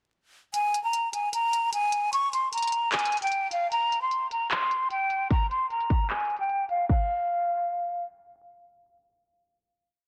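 Eerie and melancholic, this short, complete trap piece sits in a half-time hip hop groove. A breathy, hollow jazz flute carries the melody up front, its soft attack, vibrato and lifted highs shaping a looping phrase that repeats like a sampled loop in a high register. Beneath it, an electronic trap kit of hard-clipped kick, handclaps, crash cymbal and crisp hi-hats sets a produced half-time beat with fast hi-hat rolls. The opening breakdown runs under a filter sweep, and the beat breaks at 6.1 seconds before the drums stop at 7.0 seconds. A final note then carries the piece to its close, with the flute ending at 8.0 seconds. Light reverb and digital ambience frame a dense, heavily limited modern master, softened by a low-pass filter and dusted with vinyl crackle.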